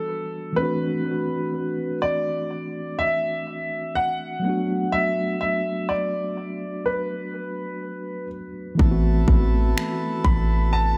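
In a straight 4/4, this moody, late-night contemporary R&B excerpt opens with an intimate, natural concert grand piano carrying the melody over a mellow, clean tine electric piano, both touched with analog delay in an echo-heavy mix with light reverb, until at 8.8 seconds a reedy, breathing harmonium adds sustained chords while a deep, boomy 808-style bass and an electronic trap kit of finger snaps and a hard-clipped kick come in up front, the drums stopping at 10.5 seconds.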